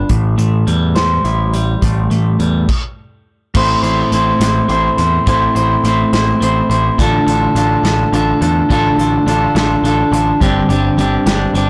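A clean, scooped electric guitar with harmonic tremolo plays an upbeat, jangly indie rock riff up front in 6/8 at 70 BPM alongside a growling, bright overdriven picked bass and an acoustic drum kit played with bundle sticks (tight kick, medium-tuned snare, hi-hat and crash), moving from Am7 through Am and Dm/A to Gsus4 with a brief stop from 2.7 to 3.5 seconds, all within a small, lightly reverberant room and a blown-out, overdriven recording cut from a longer piece.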